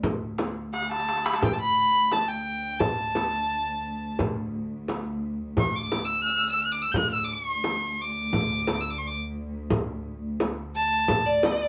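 A straight 4/4 pulse at 87 BPM from a crisp, metal-shelled darbuka and a small, bright frame drum played with soft hands carries this stately, festive Arabic maqam ensemble piece in D maqam rast, cut from a longer performance. A soft-attack cello section holds an intimate sul tasto drone on D2, while a solo violin enters at 0.7 seconds, alongside a drum fill, with an earthy, up-front melody ranging from D5 to G6, colored by light vibrato. The band plays live in one room, with moderate studio reverb lending a gentle sense of space.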